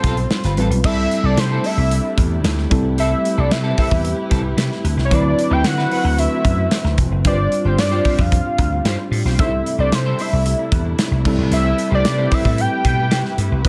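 This polished 1980s jazz-funk pop excerpt feels upbeat and breezy, with a fat, detuned sawtooth lead carrying the melody through chorus and delay over a worn, slightly out-of-tune tine electric piano bathed in lush chorus. A punchy, amped slap bass and an airy studio drum kit sit up front, while a clean picked guitar riff with analog chorus and a dark, woody string section hold the background. Chords such as G9sus4, C6 and D13 drift past in a small room with light reverb.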